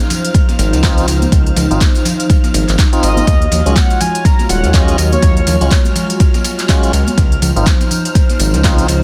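A hollow, flute-like pad and a cloudy granular haze open this smooth, deep house excerpt at 123 BPM with a 16th-note swing, joined by smooth hats, handclaps and tambourine, background congas, a gritty sampler-style ride and snare, and a silky string machine, before an up-front electronic kick lands at 0.3 seconds, a nasal, detuned synth bass follows, lightly overdriven tonewheel organ stabs with key click and tape echo drift over Dbmaj9 and Ebm11 chords, and a round, horn-like synth lead with 12-bit grit and analog delay sings from 3.0 to 5.8 seconds, with many of the parts pumping against the kick in a dense, dry, heavily limited mix.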